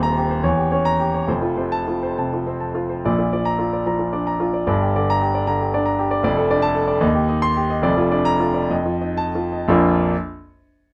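A warm concert grand piano, up front with a deep bass and light reverb, opens this hopeful, lyrical romantic character piece in Bb major, moving in a rubato 6/8 at 56-80 BPM in dotted quarters, slowing from 5.5 seconds until it settles on a Bb chord at 9.7 seconds, where the brief fragment from a longer work turns to a new section.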